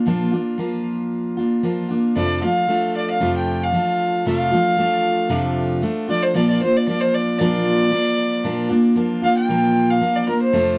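Dry and close in a 1970s studio manner, this peaceful acoustic folk fragment at 115 BPM in a straight 4/4 opens on a bright, full-bodied picked jumbo steel-string guitar over Bb, before a single reedy, gut-string bowed fiddle steps up front with a warm solo from 2.2 seconds as the harmony moves to F6 and back to Bb, all tuned to A4 = 445 Hz.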